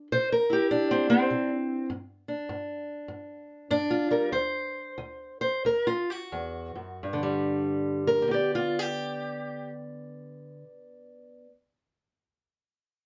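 A swung 4/4 pulse that slows between 1.9 and 7.0 seconds carries this gritty, soulful fragment of acoustic country blues, where a solo fingerpicked steel-string acoustic guitar with a dark, boxy parlour tone sits up front in light reverb, moving from C through G5 and D7 to a G chord at 7.0 seconds.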